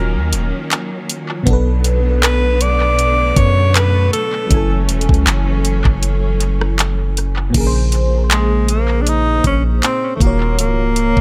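A slow 79 BPM contemporary R&B groove with a light 16th-note swing carries this sensual, late-night excerpt, where a breathy, whispered alto saxophone with subtone and tape echo sings the melody up front over a lush, detuned FM electric piano and soft pad bathed in chorus and phaser, deep sine 808-style bass, a knocking trap kit of bright hats, handclaps and rim clicks entering at 0.3 seconds, and a clear bowed string section whose sidechain-pumped sustained chords drop out at 7.5 seconds, all moving through Ebm7, Bm7, Gbm7 and Bbm7 in a dry, echo-heavy mix.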